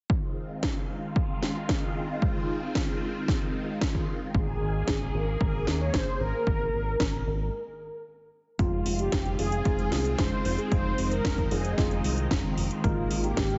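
This bittersweet, danceable italo disco cut, taken from a longer piece, has a heavily compressed, radio-like sound with light reverb and a dulled top end. It moves at 113 BPM in F minor, in 4/4 with a straight feel. A swirling, vintage string machine holds slow-attack sustained chords through ensemble chorus and phaser. Beneath it, a punchy, overdriven electronic kick sits up front, while a house kit adds a cracking snare and metallic hats; both drum parts were re-recorded in a large room. At 4.3 s a round, detuned synth brass takes the melody with chorus, phaser and digital delay, joined by a fingered electric bass whose envelope filter and tube saturation give it a warm, amped tone. After a short break, a bell-like, barky tine electric piano enters at 8.6 s with clean stabs in lush chorus, sitting in the background, as the harmony alternates between Fm7 and Absus2.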